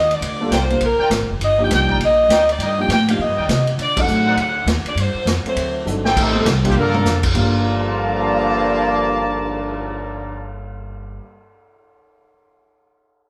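A vibrato-laden saxophone section carries the melody for the first 5.9 seconds of this sultry, swinging big band jazz fragment in G minor at 202 BPM, backed by a woody, growly upright bass, a vintage drum kit with dark cymbals and a punchy kick, natural grand piano accompaniment and soft-attack trumpet stabs, before a tight trombone section enters at 5.5 seconds and a distant, bright trumpet section takes over the melody at 6.2 seconds, the band playing live in one room with a wet studio reverb.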